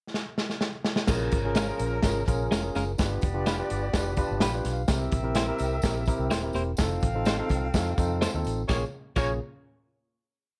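A driving 126 BPM soul beat in straight 4/4 opens with a gritty, saturated drum fill, and the breakbeat kit then hits the snare on all four beats with a tight kick and dark cymbals, while a distant tambourine jingles on every beat in the background. From 1.1 seconds a round, foam-muted fingered bass plays a syncopated line with chromatic approach notes, a barky tine electric piano comps in close voicings with a short fill at 3.9 seconds, and a clean, compressed electric guitar adds short backbeat chops from 1.6 seconds. A clear horn section with vibrato holds long swelling notes over the Bbm7, G7, C7 and F7 changes of this passionate 1960s-style soul piece, which comes to rest on a final chord.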